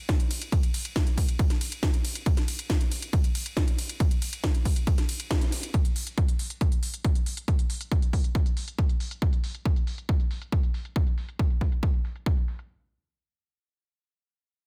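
Relentless and intense, this techno excerpt at 138 BPM in a straight 4/4 drives on a punchy, tape-warm analog kick drum up front with studio reverb, alongside an overdriven, layered electronic kit whose cracking low-pass-filtered snare and smooth hi-hats and ride cymbal pump under sidechain and filtering, opening on a drop with a band accent at 5.3 seconds before the kick drops out at 12.3 seconds and the kit at 12.7 seconds, all in a dry, dense and heavily limited modern master.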